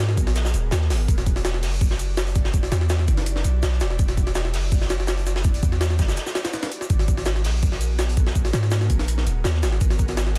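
A straight four-four drum and bass groove drives this raw, atmospheric jungle excerpt, built on a sampler-style breakbeat kit that is pitched up, compressed and overdriven, with a thumpy kick, a high-tuned snare and a gritty edge sitting up front. Beneath it, a quieter vintage acoustic kit adds hi-hat, shaker and a medium-tuned snare, its pumping small-room sound rolled off at the top. A deep, long 808-style sine bass, mellow and decaying after a fast attack, holds the low end up front from the first moment. Far in the background, an ethereal, airy pad of detuned sawtooth and triangle voices in chorused unison swells in slowly and sustains G#m9 and Em9 chords with a long release and its own reverb. A brief break between 6.2 and 6.9 seconds interrupts the flow before the harmony returns to G#m9. The dense, heavily limited master is coloured by vinyl crackle and a small room ambience.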